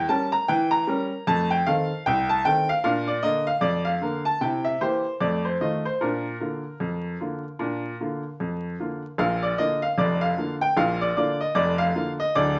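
A woody, brilliant upright piano plays cheerful, lively ragtime alone in a swung 2/4, running from deep bass notes to high treble through a short passage that opens on Edim7 and moves through F7 to Bb before a repeated section begins at 9.2 seconds, all heard from further back in a reverberant studio beneath a layer of vinyl crackle.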